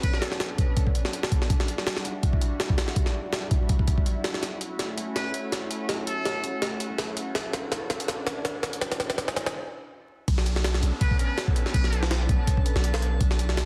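A gritty, pitched-up jungle sampler-style drum kit, with a thumpy kick and high-tuned snare, sits up front in this dark, nostalgic drum and bass excerpt at 164 BPM in B minor, rolling through a fill from 4.4 seconds and a short break before the drop at 10.3 seconds. Beneath it, a deep, mellow 808-style bass holds long B notes while a lush, detuned unison pad sustains bright extended chords through chorus and phaser. A distant, buzzy trumpet with a metal mute plays brief classical-style phrases through dub echo, and after the drop a very quiet downlifter and a glassy, drifting harmonics texture in the background colour the dense, vinyl-crackled mix.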